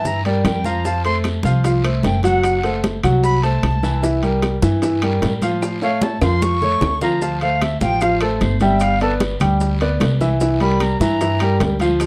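Lively and danceable, this Afro-Cuban jazz excerpt features a breathy, reedy flute solo with vibrato and a crisp chiff over clear, intimate grand piano with audible action noise and woody pizzicato upright bass up front, while tight high bongos, bright damped congas, ringing metal-shell timbales, very quiet claves, raspy distant guiro and grainy vintage maracas fill out the percussion, with a drum fill from 5.6 to 7.2 seconds in a dark production with moderate studio reverb.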